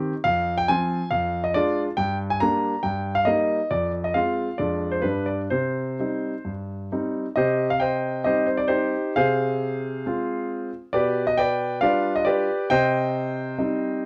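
A clear, up-front grand piano plays alone through this restless, dramatic classical-period sonatina excerpt in C minor at 137 BPM in 4/4 with a rubato feel, moving from F minor through diminished and dominant harmonies to land on C minor at 5.5 seconds, then shifting into a second section at 7.4 seconds that turns through G7 back to C minor by 12.7 seconds, all in a dark production with light reverb.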